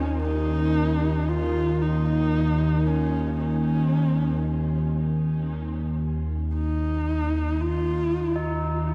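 A huge, wet reverb with a dark, warm sound surrounds this unsettling, desolate fragment of dark ambient drone in free time, cut from a longer piece. A detuned, warbling analog drone with chorus sits low and up front while a husky horsehead fiddle carries an expressive bowed melody with vibrato and portamento, bathed in shimmer reverb and diffuse delay. At 8.4 seconds, solemn, metallic tubular bells ring in with the same shimmer and delay just before the close.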